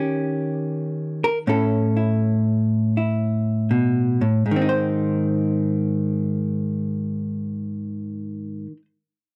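A vintage hollow-body electric jazz guitar plays alone and up front, its clean, picked tone dark and compressed as it spans Ab2 to C5 over chords running from Eb7 to A and settling on Ab at 4.5 seconds. This short, relaxed and sophisticated solo jazz excerpt, cut from a longer piece, swings gently at 80 BPM in 4/4 and in Ab major. The close, dry 1970s-style studio sound carries only light reverb, and the guitar ends at 8.9 seconds.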